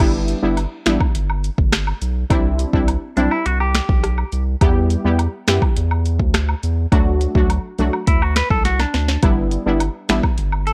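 Dancehall at 104 BPM in G major, this bouncy, summery excerpt rides a straight 4/4 groove through a chord cycle of G6, Cadd9, Em and D before returning to G6 at 9.2 seconds. An electronic afro-pop drum kit sits up front with a deep kick, sharp snare and metallic hats, dotted with finger snaps, rim clicks and crash cymbal, and a drum fill arrives at 8.7 seconds. Beneath it, a saturated sub bass gives a thick, triangle-shaped low end with a fast attack and sustained notes, while punchy synth brass stabs, detuned sawtooth tones with a filter pluck and chorus, supply bright accompaniment until 10.2 seconds. A clean, twangy electric guitar plays picked arpeggios in brief passages from 3.2 seconds and again from 8.1 seconds, and a quieter layer of woodblock, cabasa, tube shaker and group handclaps adds close acoustic texture. The mix is dry with little reverb, and the whole recording carries the worn, warbling pitch drift of old cassette tape.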